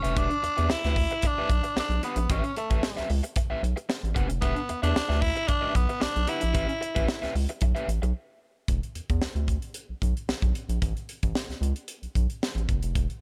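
A raspy, growling tenor saxophone leads this driving funk excerpt with a bright, vibrato-laced jazz solo over an Em7 to A9 vamp, backed by overdriven, compressed picked electric guitar accompaniment that sits low in the mix. A rubbery, hollow square-wave bass with a bouncy filter pluck and a crisp, airy studio drum kit with a high-tuned snare and tight kick stay up front throughout. After the saxophone drops out at 7.4 seconds and the guitar at 8.1 seconds, a brief break gives way at 8.7 seconds to a bass-and-drums section over E5 and Aadd9, all in a dry sound with little reverb.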